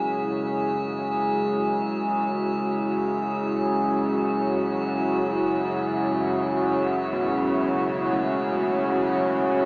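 A deep, detuned ambient pad sits up front, holding a mellow F#madd9 chord with chorus in free time, while a nasal, string-like bowed drone hums tensely underneath and an eerie, inharmonic metallic drone shimmers beside it. The synth drone fades in, giving this ominous, vast dark-ambient fragment, tuned to A4 = 437 Hz, a slowly emerging sense of space. At 7.1 seconds, very quiet old church bells enter with clangorous bronze arpeggios, and the whole mix is steeped in a heavy echo-chamber reverb with a small-speaker character.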